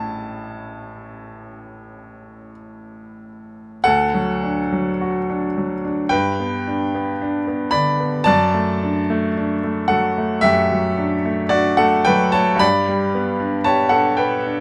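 A clear baby grand piano plays alone from the first moment, a tender, nostalgic romantic nocturne in D major, taken slowly at 43-58 BPM in 4/4 with a free, rubato feel. Heard up close and intimate, with audible action noise and long sustain ringing through light reverb, it spans A1 to B5, moving from an opening A chord into a new section at 3.9 seconds built on D, G and D/F#. This short passage is cut from a longer piece and ends at 14.6 seconds on G.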